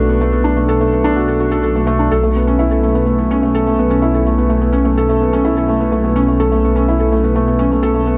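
Moving and cinematic, this short piano and strings electronica excerpt moves at 126 BPM in a straight 4/4, tuned slightly sharp to A4 = 441 Hz. A felt-muted upright piano carries the riff from 0.0 to 8.2 s, sitting between A3 and A4 with a soft, intimate, vintage tone, audible action noise and a digital delay trailing its notes. Beneath it, a dark detuned saw bass holds B1 across the same span, its deep, rumbling sawtooth body beating against itself with a fast attack and long sustain. Both parts sit up front, while a moderate, huge ambient reverb with a 4.8 s decay opens a vast space around them. The harmony shifts from Bm7 to Aadd9/B at 2.1 s, keeping a tender, suspended ache over the steady bass note.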